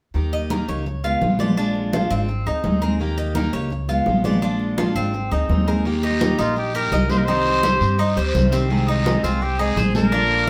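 A punchy, vintage-toned trumpet with light vibrato carries the melody from 6.0 s in this relaxed Cuban son and guajira clip, arriving just after a raspy guiro at 5.9 s, over a growly, woody pizzicato upright bass up front, a picked dreadnought steel-string acoustic guitar, bright metallic double-string tres arpeggios and soft-handed congas in the background, with the band playing together in a reverberant room.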